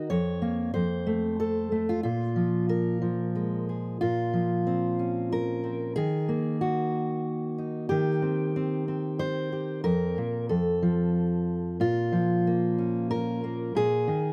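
A fingerpicked steel-string acoustic guitar plays alone in this haunting, melancholic folk excerpt in Bb minor, moving at 92 BPM in a straight 3/4 through chords such as Bbm, Ebm and Fsus4, its full-bodied dreadnought tone sitting up front with light reverb in an open-air setting, with a new section arriving at 4.0 seconds and a brief unaccompanied pause in the harmony at 10.5 seconds before returning to Bbm.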